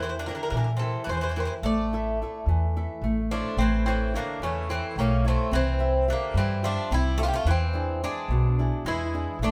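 Bittersweet and brooding, this short cut from a longer Greek folk piece in 7/8 at 216 BPM (eighths) has two picked, metallic bouzoukis with doubled strings — one warm carrying the melody, one bright on a second line — over bright fingerpicked flamenco guitar and a woody, dark pizzicato upright bass up front, the band playing live together in a moderate stone room as the chords move from Edim and A5 through A and C to E7.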